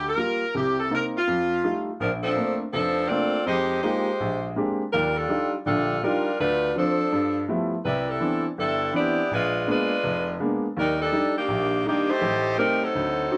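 A tight saxophone section with light vibrato carries the melody in this dramatic, swinging jazz fragment at 164 BPM, backed by a woody upright piano, both played up front in a moderate club reverb as the harmony moves from Gm7 through Bbmaj9 and Ebmaj9 to end on Am7b5 at 12.2 seconds.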